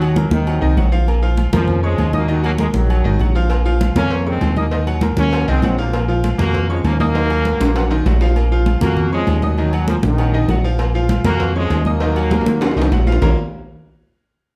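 Salsa with a fiery, passionate mood, this excerpt sets a bright trombone section with light vibrato carrying the melody over a worn, brilliant grand piano and a fat, saturated analog bass that sits up front. Ringing, high-tuned congas drive the percussion alongside distant agogo bells and timbales, while tight, vintage-sounding cowbell and bongos join in the background from 3.5 seconds, drop out at 8.2 and return at 10.8. The minor-key chords alternate between two harmonies, with drum fills marking section turns, all heard from further back in a large studio room.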